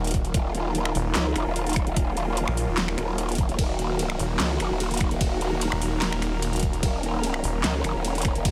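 A half-time 4/4 groove drives this heavy, chaotic wobble dubstep excerpt: an overdriven, knocking kick sits up front with a snarling, detuned distorted saw bass that stops at 7.6 seconds and a wobbling, saturated growl bass with chorus that enters at 0.3 seconds, joined by a tape-warm kit of huge snare, metallic hi-hat, ride cymbal, handclaps and finger snaps, while lush supersaw chords pump through a phaser and a blurred granular cloud pad drifts mellow in the background of a lightly reverberant space.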